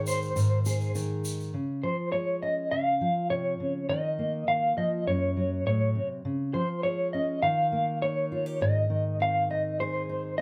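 A small, moderately reverberant room holds this gentle, peaceful folk fragment in Db major at 102 BPM, cut from a longer piece. An electric guitar through a small old amp carries the melody up front with a slightly broken-up, lo-fi, compressed tone and tremolo, while a full-bodied fingerpicked steel-string dreadnought supplies the accompaniment. A grainy, bright tube shaker sounds distant only until the 1.5-second mark, before the harmony moves through Db, Dbmaj7, Gbm and Eb to settle on Ab.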